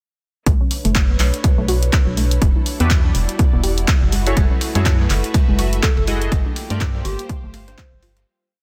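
Over a 16th-note swing at 123 BPM, a punchy four-on-the-floor kick drives this moody, smooth deep house piece in B minor, joined by a tape-warm drum machine's claps and hi-hats, a hollow organ-like FM bass in dotted rhythms, a warbling nostalgic pad holding Bm9 to Gm9 chords, a dark, dusty pluck arpeggio and a rich studio string section in the background, then glossy syncopated polysynth stabs at 2.8 s, a very quiet, gritty sampler-style breakbeat with ride and snare at 4.4 s, and a round, gentle struck synth lead at 5.8 s, in a dense, heavily limited mix with little reverb.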